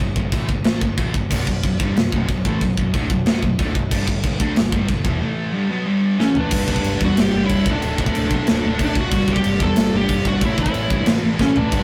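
A scooped, bright high-gain guitar riff opens this relentless, dark heavy metal excerpt at 184 BPM in a straight 4/4, backed from the first beat by a growling, overdriven picked bass and a tight, polished drum kit with bright china and crash cymbals, a medium-tuned snare, a tight kick and toms sitting up front in an airy, big room. At 1.3 seconds a sludgy, darker overdriven guitar joins the riff from the background, thickening the low end over chords that move among G5, Bm and A5. A drum fill at 6.2 seconds ushers in the second section, where a distorted lead guitar carries the melody, shadowed by a second, darker high-gain line tucked behind it. The harmony shifts through G, D5 and G5 before landing on A, with another drum fill near the close. Light reverb and a rough rehearsal-room sound with warm saturation give the whole piece a raw, live edge.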